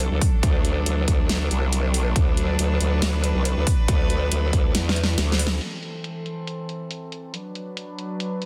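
An aggressive, heavy half-time dubstep drop at 139 BPM opens at once, with a growling, saturated wobble bass up front over a punchy electronic kick and a drum kit of huge snare and metallic hats, while a reedy, gut-string chamber ensemble sustains bowed chords behind them under sidechain pumping. A drum fill arrives at 4.7 seconds and the bass falls away at 5.6 seconds, leaving the drums and the low-passed strings, which carry a filter sweep through the closing bars. The mix is dense and heavily limited with light reverb, moving from D to A minor and B minor in this short cut from a longer piece.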